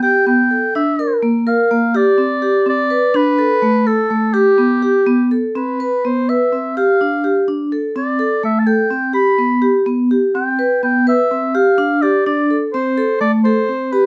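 A dark studio sound with moderate reverb frames this shimmering, hopeful contemporary chamber piece in C major, moving in a straight 5/8 at 250 BPM in eighths. A close-miked vibraphone, played with medium hard mallets, carries arpeggios throughout with a metallic, ringing tone and slow motor vibrato, sitting dry, full and slightly louder than the solo oboe, whose melody glows with a warm, light classical vibrato up front. The harmony drifts through suspended and open chords such as Gadd9 and Csus2 before a second section from 5.6 seconds settles into a Cmaj7, G5 and Am7 pattern, the passage being cut from a longer piece.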